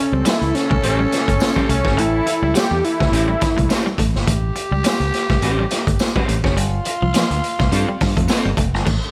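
Vinyl crackle and a light small-room reverb frame this strutting, playful funk excerpt, where a fat, detuned sawtooth synth lead with tape echo carries the melody up front until 4.0 seconds over a growling, raspy tenor saxophone second line. A raw garage drum kit with a punchy kick and saturated, gritty tone sits up front beside a direct fingered electric bass, while one dark, slightly broken-up electric guitar plays the riff and a twangy second guitar enters at 0.8 seconds to accompany from the background. A jingly, distant tambourine rounds out the groove as the harmony moves from A7#9 to G9sus4 at 6.6 seconds.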